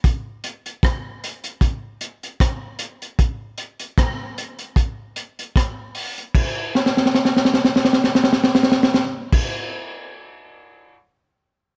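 Meditative and spacious, this short excerpt of reggae drumming moves at 76 BPM in 4/4 with a gentle sixteenth-note swing. The only part is a crunchy breakbeat drum kit, heard from 0.0 to 11.0 seconds, using kick, snare, rim click, hi-hat and crash cymbal. Its acoustic sound is dark and smooth, with a rolled-off top, dusky cymbals, a tight kick and a high-tuned snare, all sitting up front in a small room with light reverb. An opening stretch gives way to a new passage at 6.3 seconds, and a drum fill runs from 6.7 to 9.3 seconds. The result feels warm and unhurried, a close, rounded groove cut from a longer piece.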